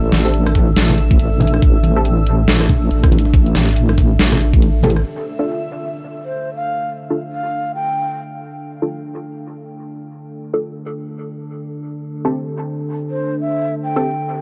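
A swung half-time pulse at 140 BPM in 4/4 drives this meditative, heavy deep dubstep piece in D minor, where a moody, warbling pad and muted, phased dub chord stabs with echo run from the start over a knocking, up-front electronic kick, a dubstep kit of deep snare, rim click and metallic hi-hats, damped, low-tuned congas in the background, a compressed sawtooth wobble bass and a reversed, granular swelling texture, the beat and bass dropping away by 5 s as the harmony shifts from Am7 to Dm and a breathy, end-blown low ney with vibrato and dub echo surfaces at 6.2 s and again at 13.1 s, the whole captured as a dry, gritty cassette recording.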